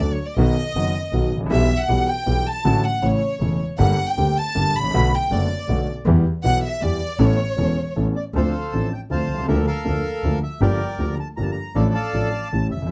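Dramatic and tense, this rubato tango in 3/4, cut from a longer piece, opens with an intimate chamber violin section bowing sul tasto with light vibrato and a soft attack over a smooth, vintage-toned grand piano with deep bass and an expressive bowed double bass with portamento, until a dark, reedy, airy bandoneon takes the melody up front at 8.2 s, in a dry sound caught by close, detailed microphones.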